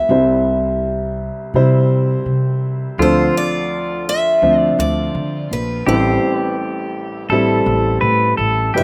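A picked steel-string acoustic guitar carries the melody up front in this intimate, melancholic acoustic folk-pop ballad, its fresh strings sounding bright and given a touch of slapback echo. A warm baby grand piano accompanies from the start, while a woody pizzicato upright bass holds the low end at a relaxed 83 BPM in a straight 4/4 feel, in D minor. At 3.0 seconds, as the harmony moves from C to Dm7 and later Am7, a clean, compressed pedal steel guitar enters with a twangy second line, played with fingerpicks and slide, using volume swells and its own slapback echo. Every part sits close to the listener, and the recording is dry and open-air, taken outdoors with little reverb. This short passage is cut from a longer piece.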